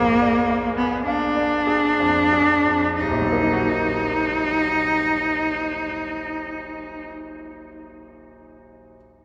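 A slow, rubato 6/8 pulse of about 30-38 dotted-quarter beats per minute eases back over the first 3.0 seconds as a Bb7 chord settles onto Eb minor in this elegiac, melancholic romantic fragment for cello and piano, tuned to A4 = 443 Hz. The single bowed cello carries the melody up front with a focused, vibrato-rich voice and a smooth top until 7.1 seconds, while the concert grand supplies a brilliant, polished accompaniment with deep bass and continues on its own until 9.0 seconds. A cathedral-like reverb with a long 5.8-second tail surrounds the duo in a church or concert hall.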